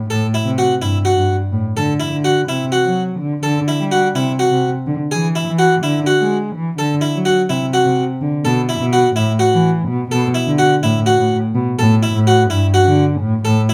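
In a restless 7/8 at 252 BPM counted in eighths, with a straight feel, this contemporary chamber piece in D mixolydian carries a hopeful undercurrent as it moves through chords such as Eadd9 and D7. A bright, plucked harpsichord with octave strings spins arpeggios up front, while a single bowed cello, muted and veiled, with light vibrato and a soft attack, holds a dark bass line beneath it. Moderate studio reverb frames the two instruments in this brief passage cut from a longer work, with both playing from the opening until about 13.6 seconds.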